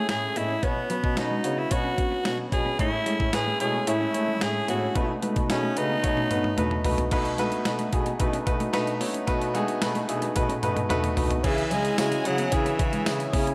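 Set in light studio reverb, this glossy, nostalgic 1980s-style pop excerpt at 111 BPM features a raspy, close-miked alto saxophone lead with delay that drops out at 6.9 seconds and returns at 11.5. It plays over a present, polished grand piano, a soft-attack bass clarinet bass line, a thumpy 12-bit drum machine with drum fills, a dark, fingered electric guitar riff with chorus and delay, a very quiet swirling phased pad, and a lush violin section with vibrato entering at 11.4 seconds as the harmony moves to C#m.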